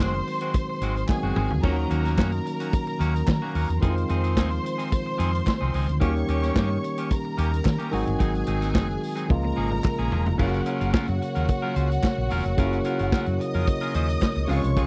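A dry, close 1970s-style studio sound in a small room frames this sultry, driving 110 BPM disco excerpt, where a round, punchy hollow-body bass sits up front with a vintage kit of dark cymbals and punchy kick, barky tine electric piano and twangy clean guitar carry the accompaniment, lush bowed strings add a smooth second line, crisp handclaps stay in the background, drum fills land at 1.1 and 9.3 seconds, and a distant, soft-attack French horn section enters with sustained chords at 10.4 seconds.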